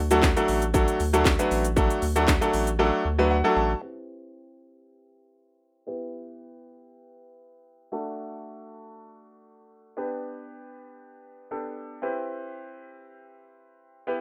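Upbeat and carefree, this dance-pop excerpt moves at 117 BPM in a straight 4/4 and opens on a drop. A deep, thick sub bass with a saturated sine tone and sidechain pumping anchors the first 3.8 seconds, while a punchy, layered electronic house kit drives things with cracking snare, crisp hats, handclaps and shaker until it falls silent at 2.8 seconds. A bright grand piano sits up front throughout, its brilliant, polished chords carrying a short sustain, and it plays a fill just before the section change. From 3.8 seconds the piano continues alone through a low-pass filter sweep, moving over Cmaj7, Em, D and G. The rough home demo mix carries light reverb, and the passage is cut from a longer piece.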